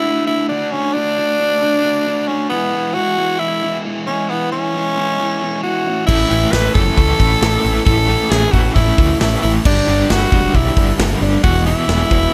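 An up-front, raspy tenor saxophone and a raw, overdriven garage guitar open this swaggering, sunny classic rock excerpt together at 134 BPM in a straight 4/4, the sax carrying a bright, gritty solo melody with vibrato over the guitar's riff. The harmony moves from D to E to A, then G and back to E. At 6.1 seconds the band fills out: a crunchy overdriven guitar adds a second riff with tremolo from the background, a growling picked electric bass brings overdriven low end, and a big acoustic rock kit arrives with punchy kick, medium-tuned snare, hi-hat and crash. The drums sit up front with a natural, roomy sound, while the whole performance carries light reverb and a small room ambience.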